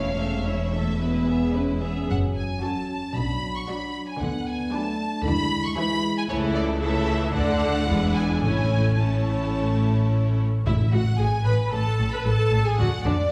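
Lush, expressive violins carry a cheerful, graceful melody over a clear second violin line, smooth violas, background cellos, distant double basses and dark, tight French horn chords in this quick, rubato classical-period orchestral excerpt, with very quiet, round timpani touches at the start and again from 8.4 to 11.4 seconds, all set in a reverberant recital hall heard from further back.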